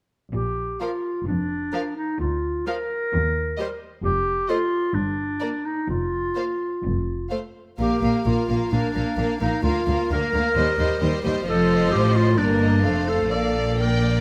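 A quick, graceful and cheerful classical-period movement for symphony orchestra in Bb major at 130 BPM, taken with a rubato feel and cut from a longer piece. A roomy, distant-toned clarinet sits up front with a second line from 0.3 seconds alongside lush bowed cello and double bass sections, while from 0.8 seconds a smooth violin section carries the melody over a second violin line and a clear, focused viola accompaniment, all with vibrato. Close, detailed microphones and light reverb keep the ensemble intimate as the harmony moves through Cm7/Eb and F7 before settling back on Bb at 13.3 seconds.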